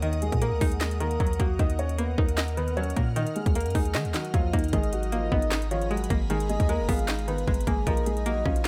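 Up-front trap drums with a hard-clipped kick, sharp snare, metallic hi-hats and handclaps drive this brooding, eerie half-time hip hop excerpt at 153 BPM in Eb minor, over a deep, boomy 808-style bass. A dark, mellow grand piano carries the melody through a low-pass filter. It is joined by a twangy, string-like resonator pluck with chorus and by an ethereal, airy pad with phaser and reverb holding sustained chords high above, as the harmony moves from Ebm to Abmadd9 and Bbm7. At 4.7 s a soft, round octave-layered synth lead with vibrato and tape echo adds a second line, set within a digital ambience.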